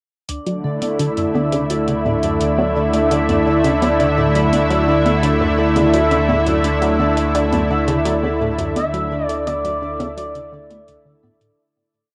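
A lush, warbling sawtooth pad opens on a Dsus2 chord up front at 0.3 seconds and slowly shifts its chords from there, joined by a round sine sub bass, a tight, detuned sequenced synth looping a 12-step pattern that drifts against the bar, a metallic vibraphone arpeggio on a 9-step loop, a pulsing gated texture on a high held note, and a light, dry machine pulse of electronic hi-hat and congas. This is expansive, cosmic space music in D major at 85 BPM, steeped in cassette-tape grit, chorus, delay and plate reverb within a small booth ambience. A smooth, expressive synth lead with vibrato enters at 8.8 seconds with call phrases as the whole piece fades out from 7.8 seconds.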